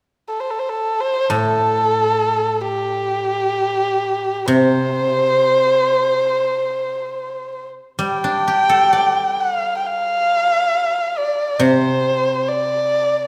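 Chinese traditional chamber music in free time and C zhi mode, pastoral and graceful, this excerpt opens with a dark, woody erhu carrying the melody from 0.3 seconds with vibrato and portamento, close and up front, joined at 1.3 seconds by a bright, silvery guzheng played with fingerpicks whose ringing accompaniment spans low to high, the pair set in a reverberant recital hall as the music moves into a new section at 8.0 seconds.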